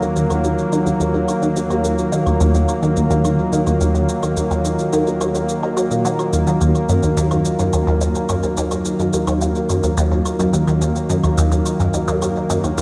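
Ambient, sequencer-driven space music with a cosmic, mysterious air, where a juicy, squelchy resonant blip pluck repeats a low riff through phaser and tape echo beneath an airy, evolving sweeping pad of sustained chords with chorus, while soft electronic shaker and woodblock with tape echo tick along in the background, all set in a wet concert hall reverb over a single Ebmadd9 chord throughout this 12.8-second excerpt from a longer piece.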